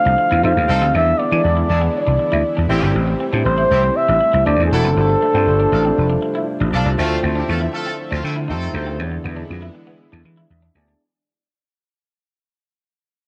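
A straight 4/4 pop groove at 119 BPM rides on a growly, punchy slap bass up front, while a worn, slightly out-of-tune tine electric piano with lush chorus and a quietly broken-up picked guitar riff with analog chorus sit behind it over F9, E7, Am7 and D9 chords. A breathy, mellow flugelhorn carries the jazz-style solo melody with vibrato and scooped notes until 6.5 seconds, backed by a distant horn section with light vibrato and analog delay and a very quiet, airy detuned unison pad. The bittersweet, slick mood is set in moderate spring reverb and cassette grit from a home recording, and the music fades out from 7.0 seconds, with a brief electric piano fill at 10.3 seconds.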